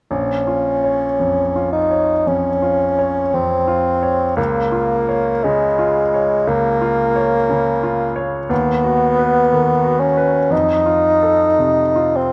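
Romantic classical duo in Bb minor, elegiac and melancholic, moving at a slow, rubato 54-61 BPM in 4/4: a mellow bassoon with light vibrato carries the solo melody up front, while a brilliant, polished grand piano with long sustain accompanies across a broad range, the harmony passing from Bbm through B/D# to an F7 at 10.5 seconds in this brief fragment cut from a longer piece, captured by close, detailed microphones in light reverb.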